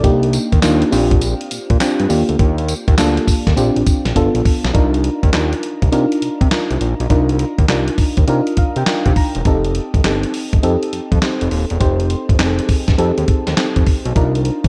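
A dusty, sampler-style drum kit sits up front in this slick, punchy stretch of new jack swing R&B, its thumpy kick, medium-tuned snare, handclaps, hi-hat and tambourine sounding gritty and compressed, with a gated reverb and the air of a large room around them. A fat analog bass runs underneath the whole way, thick and nasal, its detuned sawtooth and square-wave tones saturated and evolving with a fast attack and sustained notes. A mellow FM electric piano supplies the chords, soft, round and vintage, with a warbling chorus, a faint noise layer and a dark, shimmering reverb tail on its decaying notes. The swung groove moves through minor-seventh and ninth colours, and a drum fill at 4.2 seconds leads into a longer passage where the electric piano adds a fill of its own at 8.3 seconds. The mix carries a light digital ambience, and the clip is cut from a longer piece.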